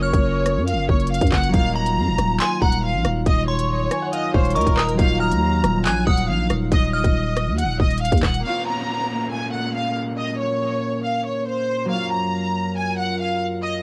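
Drill hip hop at 139 BPM in a half-time feel and Bb minor, tense and dark, with a lush, vibrato-rich studio violin section carrying the melody up front over a deep, detuned analog pad and a delicate, tinkling FM bell line treated with chorus, phaser and tape echo in the background. A growling, buzzy 808-style bass and a produced drill kit of hard-clipped kicks, crisp hats, handclaps and rim clicks drive the opening until 8.4 seconds, while a bright, ringing fingerpicked concert harp joins at 1.5 seconds. Once the beat stops, a background downlifter plays beneath the strings, harp and pad, whose cassette-tape grit and the light reverb give the home recording its moody character.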